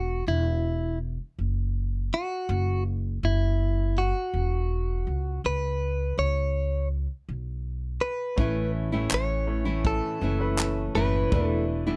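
A straight, unhurried 4/4 pulse carries this sunny, carefree slice of acoustic pop, cut from a longer piece. From the opening, a clean, compressed electric guitar recorded direct picks out the melody over a pizzicato upright bass with a woody, steel-strung tone, both sitting up front. At 8.4 seconds the arrangement fills out: a fingerpicked nylon-string guitar adds full-bodied, deep classical warmth, a clear vintage upright piano offers smooth accompaniment with long sustain, and a natural country drum kit arrives with handclaps and a punchy kick. The drums drop out at 11.5 seconds, just before the clip ends. Close, detailed miking and a dry, barely reverberant room keep every part intimate and present.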